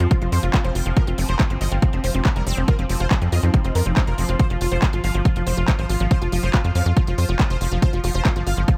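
Driven by a heavy, overdriven electronic kick up front and an overdriven techno kit of handclaps and smooth hats in straight 4/4, this psychedelic trance excerpt rides a tight, punchy sequencer bass with a mellow sawtooth edge, all in an intense, psychedelic mood inside a digital ambience. Above it, a thick, bold detuned unison lead carries the melody with vibrato, phaser and delay, while a lush, wave-folded unison pluck with ring modulation repeats a riff, both pumping against the kick. A resonant drone with moving overtones sustains chords in the background through chorus, phaser and reverb, and a very quiet, nasal vowel-sweep wobble bass surfaces only briefly at 3.3 and 6.8 seconds.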